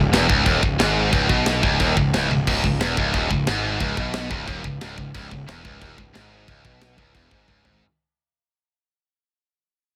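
Epic and relentless, this heavy metal excerpt charges along at 180 BPM in C# minor, with a bright, double-tracked high-gain guitar riff up front over a round, fuzzy overdriven picked bass and a tight acoustic drum kit of kick, snare, toms, crash and china cymbals that breaks into fills at 2.3 and 7.5 seconds, all in a dry sound that fades out across its short length.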